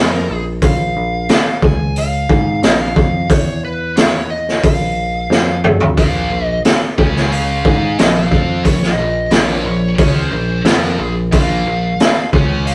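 A raw, gritty garage drum kit with a boomy kick sits up front in this aggressive, driving hard rock excerpt at 90 BPM in Bb minor, entering just after a dark, overdriven lead guitar melody and growly picked bass that open the excerpt, with a drum fill at 5.3 seconds ushering in bright distorted and scooped high-gain guitar riffs at 6.0 seconds, all captured in a rough, saturated rehearsal-room sound with light reverb.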